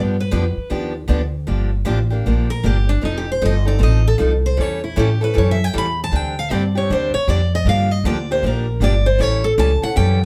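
A bright picked steel-string acoustic guitar with audible finger squeak plays accompaniment over a woody, thumpy pizzicato upright bass from the first moment of this fiery, virtuosic jazz manouche excerpt in G minor at 155 BPM in swung 4/4. A second, parlour-toned picked guitar with fresh strings joins at 0.2 s and takes the solo at 1.5 s over shifting minor and dominant chords, all set in a moderate studio room heard from further back.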